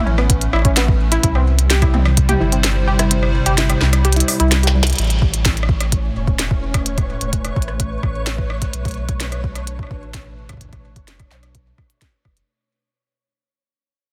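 A straight 4/4 pulse from an overdriven electronic kick and a glitchy, clicky drum kit with tiny snare, toms and delay drives this playful IDM piece over a round sine sub bass and a hollow, flute-like pad with ensemble chorus, while a dusty, wave-folded pluck spins lo-fi arpeggios until 4.9 s, and after the kick drops out and a drum fill lands, a faint grainy texture flickers in at 5.3 s as the music fades out.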